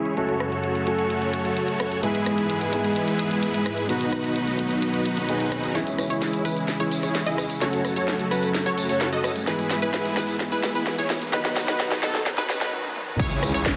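Festival progressive house at 129 BPM in C# minor, anthemic and euphoric, built on a pumping grand piano with 12-bit grit and delay, a lush background supersaw pad and a thick, up-front supersaw riff under a low-pass filter sweep, all cycling through F#m, E/G# and B. From 5.8 seconds a bright, phaser-tinged unison pluck adds arpeggios as the house kit, with its cracking, soft-clipped snare, rolls through a long fill, while a quiet riser, climbing since 4.1 seconds, heads toward a short break. At 13.2 seconds the impact lands on C#m with a punchy layered kick and a menacing, beating detuned saw bass, all bathed in a huge ambient reverb and a dense, heavily limited master.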